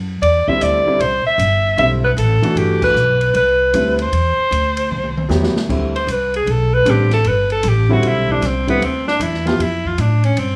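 Hypnotic and spiritual, this modal jazz excerpt swings at 154 BPM in 4/4, moving from C lydian over a Cmaj9 chord to G mixolydian on Gsus4 at 5.7 s, where the clear alto saxophone, with vibrato and plate reverb, takes a solo. A woody pizzicato upright bass sits up front from the opening, joined by an intimate grand piano with audible action noise and a dark, smooth drum kit with boomy kick and dark cymbals, which plays a fill from 4.9 s. A band accent lands at 2.8 s, and a moderate club reverb lends the small room its ambience.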